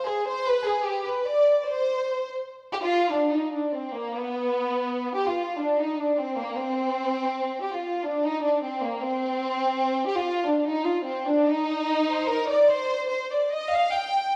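A clear studio violin section opens this short Mexican folk excerpt, carrying the music alone from the first moment to the close at 14.3 seconds. The mood is romantic and proud, moving at 148 BPM in a steady three-beat metre with a straight feel. The bowed ensemble sounds smooth and even, with vibrato colouring its lines as it ranges from Bb3 up to G5, placed up front in the mix. A reverberant recital-hall ambience surrounds the strings, while a worn cassette-tape quality adds a warbling pitch drift that gives the recording an aged character. The passage moves from a brief opening theme into a longer contrasting stretch beginning at 2.9 seconds, then returns to the opening material at 12.7 seconds before the cut.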